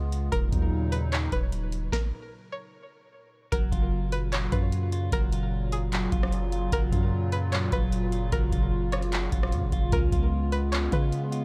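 Dry and close, this dreamy, blissful cloud-rap fragment of a longer piece rides a half-time 150 BPM groove in F# major, with an up-front analog drum machine of deep kick, crisp snare, metallic hats, handclaps and rim click under a long, sine-like 808-style bass. A hollow, flute-like pad pumps beneath a bright, twangy resonator pluck carrying the melody through chorus and tape echo, moving from D#m7 to F#maj7 and then C#7. After a stop between 1.9 and 3.5 seconds, a dark, clean electric guitar enters at 3.5 seconds with spring-reverbed arpeggios.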